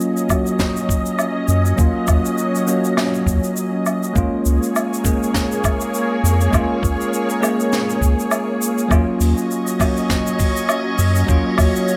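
Sunset chillout in Eb minor at 101 BPM, this wistful, relaxed excerpt from a longer piece moves in 4/4 with a swung sixteenth-note feel. A bell-like tine electric piano sits up front with a clean, bright tone, its accompaniment shaped by a filter sweep across the whole passage and trailed by digital delay, while a soft string machine holds silky, vintage chords beneath it through an ensemble chorus. Jazz brushes on an airy acoustic kit, with hi-hat, shaker, a high-tuned snare and woodblock, are joined from 0.3 seconds by a gritty, thumpy electronic kick with a tape-warm character. A round analog bass enters at 1.5 seconds, deep and slightly nasal, carrying the low end as the chords move from Ebm7 to Bbm7/Db and back. From 9.3 seconds a glassy texture of drifting overtones floats high above the rest, calm and softened by chorus, all set in a light, small-room ambience.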